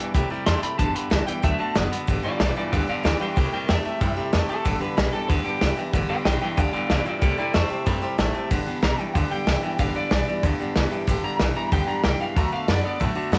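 A slightly broken-up electric guitar through a small old amp carries the melody from 0.5 s, its bright, lo-fi twang colored by tremolo and tape echo. This is a rowdy, rollicking stretch of rockabilly in a straight four, cut from a longer piece. Beneath it, a clean, picked electric guitar drives the riff, while a full-bodied dreadnought acoustic guitar picks the accompaniment, finger squeaks and all. Pizzicato upright bass adds a woody, steel-string pulse, and a vintage drum kit sits up front with a punchy kick, a medium-tuned snare and hi-hat, its muffled, rolled-off sound suiting the small room ambience. From 2.1 s, a clean electric guitar solo runs until the end.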